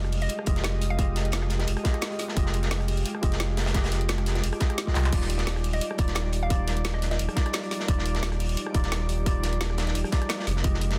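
Liquid drum and bass at 174 BPM in Eb major, this lush, dreamy passage is cut from a longer piece and moves from Fm9 to Ebmaj9 at 5.1 seconds before returning to Fm9. A deep, full sub bass with an octave sits up front, its sine and triangle tone sustained under a tight, layered electronic kick that enters at 0.5 seconds. Two drum kits share the groove: a produced kit with a woody snare, bright hats, handclaps, rim clicks and crash, and a dark, gritty, saturated acoustic breakbeat whose medium-tuned snare and hats are high-pass filtered, with a drum fill at 5.0 seconds. A worn, slightly out-of-tune tine electric piano plays clean accompaniment through digital delay, while a shimmering, ethereal, granular, detuned pad with octave-up shimmer, chorus and sidechain pumping holds sustained chords in the background. A hollow, bouncy square-wave pluck with chorus and delay adds brief melodic touches around Eb5 to F5, first near the start and again from 5.7 to 7.4 seconds. 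The mix carries digital ambience and a dense, heavily limited modern master.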